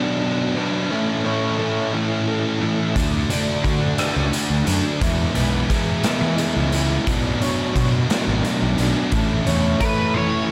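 Bittersweet and cathartic, this short cut from a quiet-loud alternative rock piece in 6/8 at 58 BPM in A major opens with a dark, lo-fi guitar through a small old amp picking arpeggios with harmonic tremolo and slapback echo over a sludgy, double-tracked overdriven riff guitar. At 3.0 s a growly fuzz bass and a raw garage drum kit join, the kit bringing a punchy kick and a gritty, saturated room sound. An up-front octave-fuzz lead guitar then sings a brief melody at 9.8 s, all set in a lush hall reverb with a big arena feel as the chords move from Bmadd9 through A, D and E.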